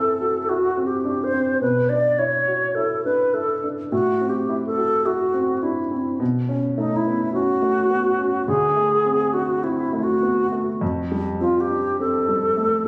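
Captured on a phone in a recital hall, this short cut from a longer piece carries a moderate hall reverb with an added layer of club-style reverb and compression, giving it a hazy, slightly compressed bloom. It is an impressionist classical duo for alto flute and grand piano in 4/4, played with a loose rubato that suits its wistful mood. The alto flute carries the melody from 0.0 to 12.9 seconds, sitting up front with a pure tone, vibrato and crisp attacks in its middle register. The grand piano accompanies throughout, equally forward but a touch quieter, with a smooth, vintage character and short sustain that reaches down into the deep bass. The harmony drifts through colored chords such as Am7, Bmadd11, Bsus2 and Fadd9, keeping the music suspended and dreamy.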